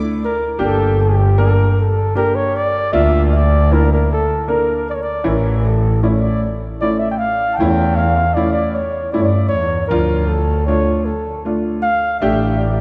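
Bathed in a long church reverb, this soulful, festive klezmer fragment in 3/4 at 78 BPM and in G Dorian with a raised fourth pairs a breathy, mellow flugelhorn melody with light vibrato against a worn, woody, slightly detuned upright piano and a rich, focused bowed double bass, moving through Gm, then A at 5.3 seconds and Dm at 9.9 seconds.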